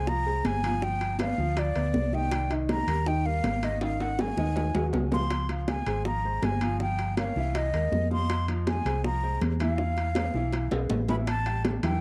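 Sophisticated and driving, this short Afro-Cuban jazz cut from a longer piece sets a breathy, straight-toned flute up front on the melody, touched with tape echo, over woody, long-sustaining upright piano accompaniment and a dark, round, punchy hollow-body electric bass. High-tuned bongos snap close and tight, ringing congas sit distant in the background, and vintage metal-shell timbales enter at 0.5 seconds, with drum fills at 3.8 and 10.5 seconds. The harmony moves through rich chords like Dbmaj7#11 and C7alt, all captured in a dry, close 1970s-style studio sound.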